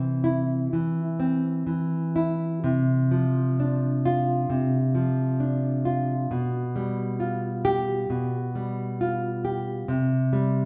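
A wet recital-hall reverb surrounds this short excerpt, giving a solo nylon-string guitar a spacious, resonant setting that sounds like a church or concert hall. The piece is romantic and wistful with a passionate undercurrent, moving in a rubato 4/4 at roughly 62-69 BPM in C major. The guitar sits up front, full-bodied and deep in its classical tone, thumb-plucked across a range from B2 to G4, with a touch of finger squeak audible on the strings. The harmony moves from C to Dm7/C at 2.6 seconds, then to G7/B, before settling on a bare C5 at 9.9 seconds. Lasting about 10.7 seconds, the passage is cut from a longer work.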